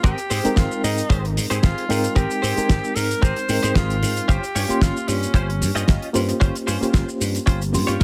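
The recording sits in a studio reverb, with a tight acoustic kick drum placed up front and louder than any other part. This is an 8-second cut of sunny, groovy nu-disco at 113 BPM in 4/4, with a light swing on the sixteenths and an Eb mixolydian colour. A damped 70s drum kit adds hi-hat, shaker and a fat snare. A punchy, growly thumbed slap bass, foam-muted and recorded direct, pumps against the kick. A reedy, worn electric piano, slightly out of tune, lightly overdriven and shimmering with fast tremolo through its built-in speakers, also pumps as it carries the harmony from Abmaj9 to a rootless Eb13/G at 4.3 s. Over this, a twangy, scooped clean electric guitar riff with ensemble chorus runs alongside a forceful, vintage-toned tenor saxophone melody, clear and vibrato-laden with scooped notes and a trail of delay.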